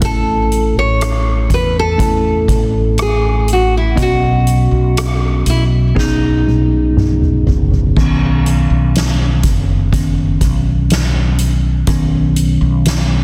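A dense, heavily limited modern master with light studio reverb frames this tender, heartfelt pop ballad, cut from a longer piece, moving slowly at 61 BPM in a straight 4/4 over an A chord and then Badd9. Up front, a warm, full-bodied, fingerpicked nylon-string guitar carries the melody in a classical style, with audible finger squeak and a delay on its lines, before dropping away partway through. A worn, slightly out-of-tune tine electric piano gives clean, mellow accompaniment throughout and takes a solo from 8.0 seconds to the close. Beneath it, a round, dark fretless electric bass with subtle chorus holds the low end, sitting a touch louder than the other parts. The soft-mallet drum kit sounds natural and hall-like, with a boomy kick, a fat snare touched by soft clipping and dark cymbals, and it plays a fill from 6.0 to 8.0 seconds that leads into the second section.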